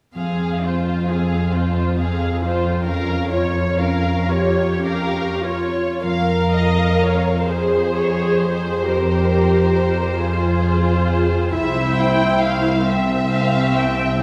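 In a rubato 12/8, this slow, yearning and melancholic romantic orchestral excerpt sets veiled, con sordino violins on the melody and a lush second line over dark, muted violas, while muted cellos carry a smooth-topped bass up front and a thumb-plucked concert harp rings out arpeggios in the background, the whole ensemble heard from further back in a reverberant scoring stage as the music moves into a new section at 6.0 s and reaches a C7b9 chord at 11.5 s.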